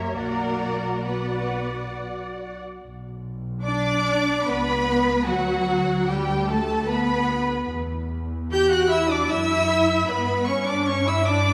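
Yearning and melancholic, this slow romantic movement for string orchestra moves in a rubato 3/4 at around 66-78 BPM in B minor, tuned slightly low at A4 = 437 Hz, and is cut from a longer piece. The violins carry the melody high in their range, reaching up to G6, with vibrato and portamento giving the line an expressive, distant quality, while a second violin part sings a smooth, even line beneath it. Violas fill in the accompaniment with their own lush vibrato and gliding portamento, and the cellos sit in the background with an expressive, bowed tone. Double basses anchor the bottom from B1 to G2 with a woody sound, all five sections playing together through the full 11.5 seconds. The harmony settles on B minor before shifting to Em by 7.7 seconds, and a generous scoring-stage reverb with a 2.0-second decay wraps the ensemble in a spacious, wet sound.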